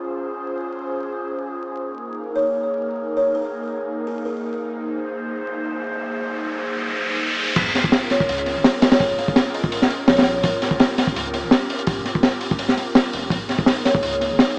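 A crackly, echo-heavy mix with a small-speaker sound and a moderate spring reverb frames this nostalgic yet frenetic drum and bass excerpt, set in Bb dorian at 167 BPM with a swung 16th feel. An airy, breathy pad sustains detuned chorused chords under a filter sweep across the first 7.6 seconds, while a buzzing, woody kalimba plays short melodic phrases through dub echo, and a riser leads into a sub drop and impact. At 7.6 seconds a crunchy, gritty breakbeat kit with a punchy kick, high-tuned snare and dark cymbals hits up front through analog delay, joined by a soft, round dub sub bass with tube saturation.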